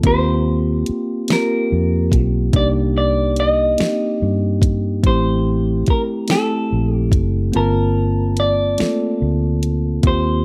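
A mellow, clean tine electric piano, a round, foam-muted fingered electric bass and a smooth, produced drum kit with a soft kick, fat snare and hats open this yearning, late-night six-eight R&B fragment, joined at 0.1 seconds by a picked hollow-body electric guitar carrying the melody through a slapback echo over chords moving from Eb6 through Cm9 and Am7 to Gm11, with the kick dropping out from 7.5 to 10.0 seconds, all set in a dark digital ambience.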